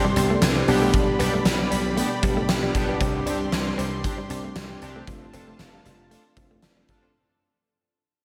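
A big arena sound bathed in a lush hall reverb frames this short, romantic and nostalgic slice of 1980s-style pop, which is fading out from its first moment. At 0.2 seconds a huge acoustic drum kit enters up front with a punchy kick, a fat snare and hi-hat, arriving together with a glassy, bright slap bass. A tine electric piano carries the accompaniment through its built-in speakers with a slapback echo, and it adds a short fill from 6.4 seconds. Sustained chords come from a thick, nasal unison pad with chorus, while sawtooth analog synth brass sits in the background with bold stabs touched by chorus and echo. A very quiet, compressed clean electric guitar, recorded direct, picks a riff beneath it all as the harmony moves from Csus2 through G/B and back to Csus2 before settling on F6, with a gentle swing on the sixteenths.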